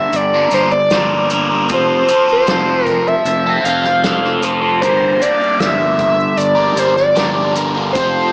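A straight, unhurried 4/4 pulse at 77 BPM anchors this short psychedelic rock fragment in G dorian, moving from Gm to F at 1.7 seconds and back to Gm at 4.8 seconds. A soft-mallet drum kit sits distant and roomy in the background, its punchy kick, medium-tuned snare and hi-hat keeping time, while grainy, mellow maracas add a close, quiet texture. The fuzz fingered electric bass holds low around F1 to G1, its overdriven tone warm and fuzzy under the band. Up front, a bright, picked electric guitar riff, double-tracked and compressed, swirls through a phaser across a span from G2 to Bb4. Riding on top, a screaming, guitar-like synth lead carries the melody between C5 and F5, its gritty sawtooth and square-wave tone shaped by a filter sweep, vibrato, distortion and a slapback echo. A moderate spring reverb and a small speaker sound wrap the mix in a hypnotic, trippy haze.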